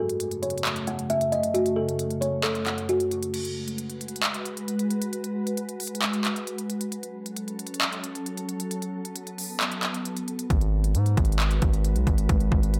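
Dark and hard-hitting, this trap-flavored hip hop cut from a longer piece moves at 134 BPM with a half-time feel in G# phrygian, shifting between F#m and G#m7. It opens with a woody kalimba melody plucked with the thumbnail, short and boxy as if in a small room, filtered and trailed by dub echo before it drops out at 3.1 seconds. Underneath, a glassy, ethereal FM pad holds sustained chords throughout, its slow attack and long release softened by ensemble chorus, built-in reverb and a low-pass filter. The electronic trap kit sits up front with a hard-clipped kick, crisp hi-hats, handclaps and crash cymbal, carrying the music through a filter sweep and then a long break. At 10.5 seconds a heavy, saturated 808-style bass with a noise layer, a fast attack and a decaying body punches in, pushing the echo-heavy, lightly reverberant mix toward its darkest weight.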